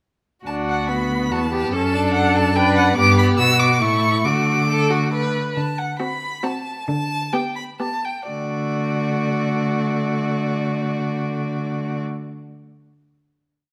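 A spirited, lively classical-period movement for string quartet in D major and 3/4 at 120-145 BPM, where a rich, distant first violin carries the bowed vibrato melody up front, a focused second violin weaves independent inner lines with answers at phrase ends and pizzicato accompaniment, a smooth-topped viola adds chords in the rhythm of the tune and sustained harmony, and a warm cello anchors the bass with passing notes and pizzicato, all in a moderate recital-hall reverb as the tempo slows from 4.9 seconds into a coda that settles on a final D chord at 8.3 seconds.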